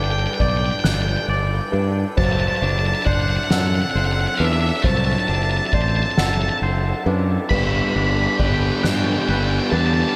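A light reverb and small room ambience frame this hopeful, cinematic post-rock build-up in 6/8, cut from a longer piece. Up front, an octave-fuzz lead guitar carries a dark, distorted melody with slapback and tape echo over a growling, overdriven fingered bass. Meanwhile, a twangy electric guitar and a muted, mellow upright piano with audible action noise play arpeggios, and an icy, crystalline pad sustains chords in the background; a soft-mallet drum kit with a fat snare and boomy kick enters at 0.4 seconds, and a picked fuzz guitar riff joins at 7.5 seconds.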